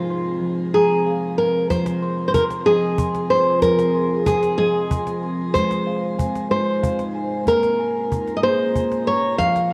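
World meditative music built on tuned percussion, this hypnotic, gentle fragment of a longer piece moves in a straight 6/8. A fingerpicked nylon-string guitar carries the melody up front, its classical tone showing a touch of finger squeak and colored by cassette tape, shimmer reverb and analog delay. Alongside it, a steel tongue drum struck with soft rubber mallets plays round, pure, ringing arpeggios, and a deep, moody pad of detuned sawtooth and sine layers with a sub octave holds slow-attack chords through chorus, shimmer reverb and tape. At 1.7 seconds a snappy cajon with snares enters, played with soft hands and heard close and dry. The harmony moves from F minor to A-flat at 5.5 seconds and B-flat minor at 7.5 seconds, all set in a small room with a wet spring reverb and the hazy character of a home cassette recording.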